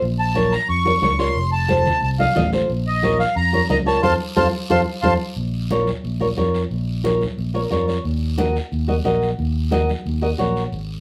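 Fiery and driving, this brief cut from a longer cumbia in Bb minor runs at 179 BPM, with a full-bodied fingerpicked nylon-string guitar and a round, dark fingered electric bass up front, a close, raspy guiro, softly played ringing congas in the background, a sweet, reedy accordion with light tremolo tuning carrying the melody until 5.1 s, a band accent from 4.0 s, and a guitar fill at 7.4 s, all in a live-room reverb.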